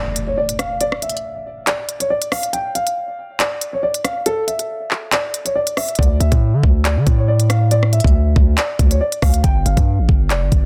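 A dark, boxy concert grand piano opens this cold, tense drill excerpt with a delayed melody ranging from A4 to G5, joined at once by a short electronic impact that ends by 0.8 seconds. From 0.2 seconds an electronic drill kit sits up front with a knocking kick, crisp hi-hats, handclaps and rim clicks. At 139 BPM in 4/4, the groove moves with a half-time feel in D harmonic minor. At 6.0 seconds the break ends and a distorted, saturated 808-style bass enters, heavy and aggressive with a fast attack, a noise layer and a decaying tail, under chords moving from Dsus2 to Fsus2. The mix is dry, dense and heavily limited, keeping the piano, drums and bass close and forward.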